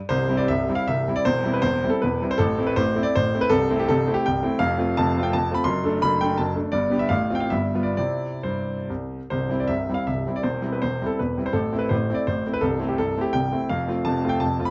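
Romantic classical piano in a rustic, graceful triple-time dance, with dotted rhythms in C major and a rubato pulse that moves between 123 and 182 BPM. A clear, intimate baby grand plays alone from C1 to C6, sitting up front with natural tone and audible action noise. A moderate large-room reverb and a dark production surround it, and the opening phrase returns at 9.3 s before this excerpt from a longer piece breaks off on an F chord.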